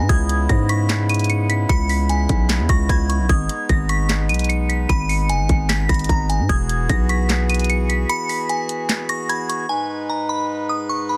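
A dense, heavily limited and nearly dry trap mix carries this melancholic, hard-hitting hip hop piece at 150 BPM in a half-time feel in G# minor, where a glassy, warbling FM synth bell with chorus and tremolo leads over a delicate, tinkling tine bell with digital delay and reedy accordion chords, while a growling, buzzy 808-style bass and an up-front trap kit of hard-clipped kick, sharp snare, bright hats and handclaps pound beneath until the bass stops at 8.1 s and the drums at 9.6 s.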